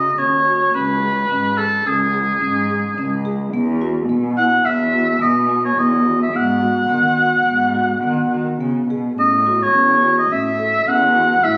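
A distant oboe with light vibrato sings the melody up front from the first second, over round, mellow soft-mallet marimba arpeggios and a veiled, bowed cello bass played con sordino, in this hypnotic, restless piece of contemporary chamber music in 5/4 at 107 BPM, tuned to A4 = 435 Hz, heard through moderate recital-hall reverb as a phone recording cut from a longer work, with a new section arriving at 9.2 seconds.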